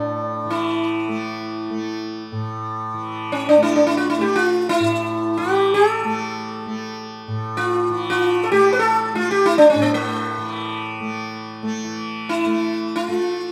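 A plectrum-plucked sitar sits up front, its bright, buzzing tone ringing with sympathetic strings as it spins a meditative, radiant Hindustani melody in free time. Beneath it, a softly plucked tanpura holds a shimmering drone lower in the mix throughout. Moderate studio reverb surrounds the pair, captured playing live together in one room, in this short cut from a longer piece lasting 13.5 seconds.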